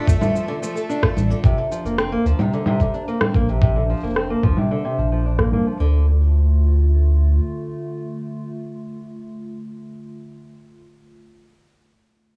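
Folktronica in an autumnal, intimate mood, where a biting bowed cello offers a brief tape-echoed phrase while a warbling, nostalgic pad holds sustained chords, a boxy fingerpicked archtop guitar with sampler grit plays arpeggios, and a round sine sub bass and a thumpy, muffled kick sit beneath overdriven electronic cabasa, congas and rim click, with filter sweeps on the drums, bass and guitar until 5.8 seconds, the bass stopping at 7.4 seconds and the pad carrying on alone to 10.1 seconds in this cut from a longer piece.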